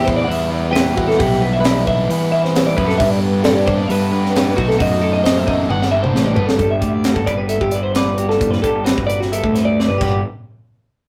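A rough rehearsal-room recording with light reverb opens this bright, intricate cut from a longer math rock and midwest emo piece, moving at 133 BPM in 4/4 with a straight feel in G major. Two picked twelve-string electric guitars start together: one, clean and twangy, carries the melody until 6.4 seconds, while a warmer, compressed one spins arpeggios through the whole passage. A biting, double-tracked overdriven guitar plays a riff underneath until 6.6 seconds, and a growly, punchy fuzz bass, fingered and sitting up front, runs from start to finish. A crisp, airy fusion drum kit with a high-tuned snare, a punchy kick, cymbals and toms adds fills that lead into the second section at 6.6 seconds and close it out. There a third clean twelve-string guitar takes over the accompaniment as the harmony, which earlier moved from Em9 through G and B7b9 to Gmaj9, settles on Gmaj7 before the music stops.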